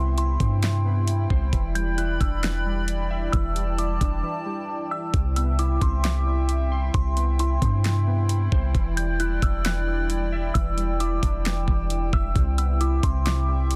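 A dense, heavily limited modern mix with little reverb carries this floating, blissful stretch of atmospheric cloud-rap, cut from a longer piece, at 133 BPM in a half-time 4/4 feel in C major, with a brief break between 4.2 and 5.1 seconds. A crystalline FM synth bell sings the high melody through chorus, delay and a low-pass filter, while airy, detuned digital keys play arpeggios with the same treatments, and a hollow, flute-like pad holds Cmaj7 and Em7 chords with chorus and sidechain pumping. Up front, a round, dark 808-style bass sits under an electronic R&B drum kit of knocking kick, fat snare and metallic hats that enters at 0.2 seconds.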